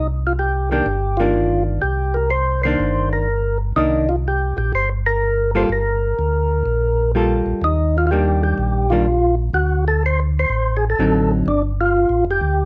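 A swung 4/4 jazz groove at 125 BPM sets a smoky, late-night mood in this short excerpt, with a percussive tonewheel organ carrying the melody over a round, dark organ bass, both turning through a slow rotary speaker with audible key click, while a clean, picked hollow-body guitar adds accompaniment from 0.7 to 11.5 seconds in a moderate club reverb, moving from Cm9 through Gm9, Ebmaj7 and D7b9 to a closing G7sus2.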